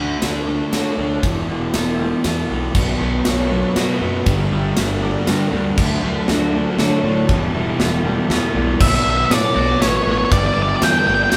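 A steady 3/4 pulse at 119 BPM drives this brooding, cinematic post-rock passage in B minor, taken from a longer piece and built up over its first 8.8 seconds. A big, punchy acoustic drum kit sits up front from 0.2 seconds with bright cymbals, while a fuzzy overdriven picked bass anchors the low end and a crunchy overdriven guitar plays a riff in the background. A very quiet, twangy clean guitar and a ringing vibraphone struck with hard mallets both play arpeggios, and a lush, very quiet string section holds sustained chords with vibrato and portamento. A thick, dark fuzz guitar adds a second riff from 2.7 seconds, and at 8.8 seconds an octave-fuzz lead guitar enters with a distorted melody up front. The chords move through D, Em7, Bmadd9 and Gmaj7, and the band sounds as if playing live together in one room with light reverb.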